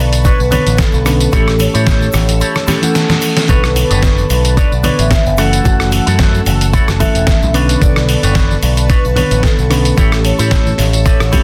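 Groovy and sensual, this nu-disco clip swings lightly in 4/4 as a metallic vibraphone melody with delay and fast motor vibrato rides over a reedy electric piano, a thick, detuned unison pad with chorus and sidechain pumping, and a punchy picked bass with an envelope filter that also pumps with the sidechain. A gritty, thumpy electronic kick and a dusty soul sampler-style kit with a fat snare, rim click, hi-hat and tambourine drive the groove, while soft-handed egg shaker and congas sit in the background and a twangy, scooped electric guitar riff with an envelope filter and subtle chorus enters at 0.2 seconds. A drum fill arrives at 2.7 seconds alongside a very quiet reverse cymbal, over Bm9, A7 and F#m7 chords in a dense, heavily limited modern mix with light digital ambience.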